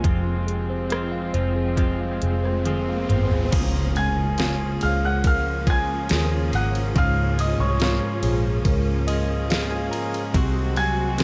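A clear, natural grand piano carries the melody through this emotional, melancholic pop ballad, which moves at a slow 70 BPM in 4/4 and is cut from a longer piece. Beneath it, a tine electric piano heard through its built-in speakers plays the accompaniment, while a lush, bowed studio string section with vibrato holds intense sustained chords. A twangy, compressed clean electric guitar recorded direct picks arpeggios coloured by subtle chorus and tape echo, and a foam-muted, round, punchy fingered bass anchors the low end. The layered, up-front drum kit has a knocking kick and a deep snare, overdriven and re-recorded in a small room. Around 2.1 seconds a background riser begins to build, joined by a drum fill from 2.7 seconds, landing on an electronic impact at 3.5 seconds as the harmony moves from Fm to Db6, and the electric piano adds a fill near the close before an Ab7/C chord. Light digital reverb sits over a dark, warm production.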